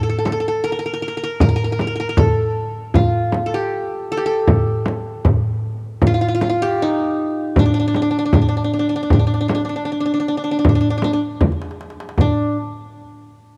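Melancholic and soulful, this short passage cut from a longer Turkish makam ensemble piece puts a plectrum-plucked qanun up front, its bright-edged triple strings carrying the melody with a cassette-tape color. Beneath it, a close, soft-handed frame drum adds a warm acoustic pulse, while a crisp metal-shell darbuka, struck with hard hands, sits a little further back in a small-room sound. A drum fill from 11.4 to 12.2 seconds closes the main section, all captured as a home cassette recording with light studio reverb.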